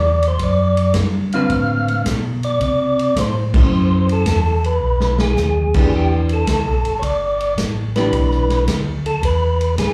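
A swinging 4/4 groove at 109 BPM drives this bluesy soul jazz organ trio in D mixolydian, cut from a longer piece and heard as a live club gig through the venue's PA with small-room ambience. A percussive tonewheel organ carries the melody with third-harmonic percussion, slow rotary speaker and slapback echo, while a mellow, round tonewheel organ bass with chorus vibrato sits up front, and a big-band kit with crash, ride, hi-hat, medium-tuned snare and boomy kick enters at 0.2 seconds. A dark, picked hollow-body jazz guitar with slapback echo comps from 1.3 to 8.7 seconds. The chords move from D13 through F#m7 and B to Em7, with the band hitting an accent at 3.4 seconds and a drum fill arriving at 4.8 seconds.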